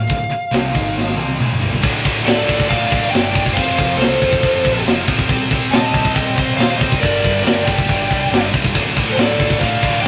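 A dark, high-gain lead guitar carries the melody over a tight metal drum kit with bright cymbals and a tight kick, joined at 2.3 seconds by a second distorted lead line in this relentless, dark heavy metal excerpt. Beneath them, two scooped rhythm guitars and a growling, overdriven picked bass churn out the riff, thickened at 1.8 seconds by a double-tracked distorted guitar as a drum fill gives way to the next section. The sound is rough, like a rehearsal room with a moderate booth ambience.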